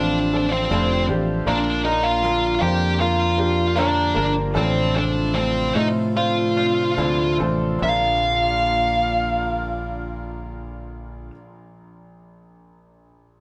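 From the first second, a distorted fuzz lead guitar carries the melody up front over a warm concert grand piano with audible action noise, a very quiet fingerpicked nylon-string guitar with finger squeak, a round, dark fingered electric bass and an airy, breathy chorused pad in the background, in this tender, emotional pop ballad in Bb major at 70-79 BPM, tuned to A4 = 437 Hz and cut from a longer piece, which slows down between 1.5 and 7.8 seconds over Dm7/A and Bb chords in a wet, live-room sound, before the piano plays on alone until 13.4 seconds.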